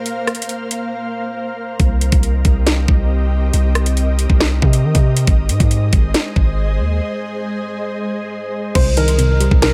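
An echo-heavy mix in a digital ambience frames this tense, cold drill excerpt at 138 BPM in a half-time 4/4 feel in C minor, where an ethereal, airy pad with ensemble chorus and built-in reverb holds sustained chords through Bbsus2, Cm7 and Ab beneath an up-front electronic kit of knocking kick, sharp snare, metallic hats, rim clicks and crash. After a brief silent break, a deep, sine-toned 808-style bass with a fast attack and decaying tail arrives at 1.8 seconds and sits up front with the drums. At 8.8 seconds, a dark, woody upright piano with audible action noise and a soft, round filtered pluck join on the return to Cm7, both carried by dub echo.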